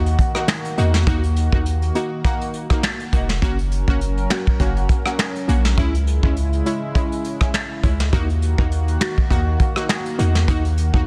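A heavy, punchy 808-style bass with a sine body and a noise layer sits up front in this tough, sultry dancehall excerpt at 102 BPM, swung on the sixteenths and moving through D#m, F#, C#m and back to D#m. A vintage brush drum kit with a punchy kick, medium-tuned snare, rim clicks, hi-hat and finger snaps enters at 0.1 seconds, sounding acoustic and up front with a rolled-off top. Bright, detuned sawtooth brass stabs with a filter pluck, chorus and phaser add accompaniment, while a mellow analog pad with a sub octave and long release holds sustained chords with chorus and sidechain pumping, all in a small room under a dense, heavily limited modern master.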